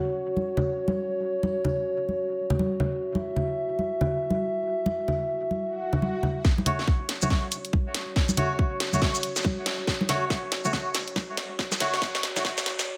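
A swung, half-time 4/4 pulse at 140 BPM drives this meditative, cavernous deep dubstep excerpt in F# minor, where a dark, detuned analog pad with chorus holds sustained chords from the start and bright, dry congas with dub echo enter at 0.4 seconds, an electronic swell appears at 5.7 seconds, and at 6.4 seconds a tight, up-front electronic kick and a garage kit of filtered hi-hat, shaker and cracking snare arrive for a build-up with a drum fill and filter sweep, joined at 6.7 seconds by reedy, breathy melodica stabs with a low-pass filter and dub echo, the mix bathed in dreamy plate reverb.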